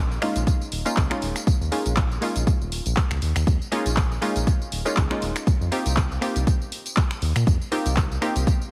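A round, dark analog bass with sidechain pumping opens this hypnotic, late-night deep house excerpt at 120 BPM with a 16th-note swing. It is quickly joined by a layered overdriven kit of finger snaps, handclaps, hi-hat and tambourine, then by muted detuned dub chord stabs carrying chorus, delay and a filter sweep, and finally by an overdriven electronic kick drum, deep and up front. Together they move from Eb9sus4 to F9sus4 at 5.5 seconds under light reverb, vinyl crackle and a heavily compressed radio sound.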